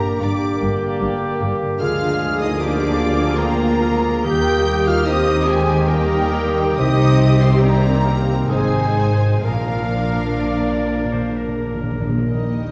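Set in a flowing, rubato 3/4, this slow, lyrical orchestral movement opens with the violin section singing a smooth, lightly vibratoed melody high above a very quiet, focused second violin line. A bright clarinet, mellow cor anglais and airy silver flute weave soft second lines in the background, while a present bassoon, lush violas, dark, woody cellos and rich double basses fill the lower register. French horns and a tight trombone section hold sustained chords, a clear trumpet section adds stabs, and a ringing, thumb-plucked harp plays arpeggios, with hard-mallet timpani entering at 4.2 s and returning for a fill at 9.4 s, the ensemble heard from further back in a wet scoring-stage reverb.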